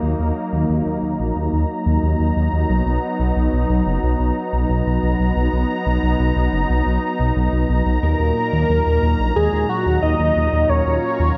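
Synthwave with a driving, moody feel, this excerpt from a longer piece opens on a soft-attack analog pad of smooth, detuned sawtooth chords and a thick, up-front detuned saw bass, both sustained under chorus. At 8.0 s a bold unison lead enters with the melody, its sawtooth and triangle tones backed by a sub octave, a moving notch and vibrato, colored by subtle chorus, cassette tape and delay. The dark, warm production sits in a wet recital hall reverb that lends the parts a sense of space.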